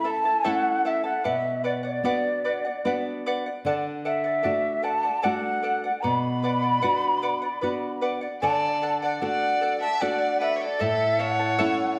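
An airy, up-front cane quena with vibrato and a slapback echo carries the melody over shimmering, fingerpicked double-string charango and deep nylon-string classical guitar with audible finger squeak, setting an earthy, melancholic Andean folk mood at 75 BPM in 3/4, until a rich, smooth solo bowed violin joins with a second line at 8.4 s, all within the sound of a reverberant recital hall in this excerpt from a longer piece.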